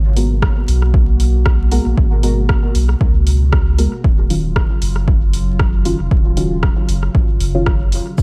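Dry and dusted with vinyl crackle, this hazy, deep dub techno cut from a longer piece drifts from G#m9 to D#m9 at 4.0 seconds over a lightly swung groove. A warbling, nostalgic tape-like pad holds detuned chords with chorus, built-in reverb and sidechain pumping, while a clean, dark sine sub bass pumps beneath it. Soft, evolving chord stabs with a filter pluck, chorus, phaser and dub echo enter at 0.2 seconds alongside a deep house kit of hi-hat, rim click and shaker, and a punchy, up-front electronic kick joins at 0.4 seconds.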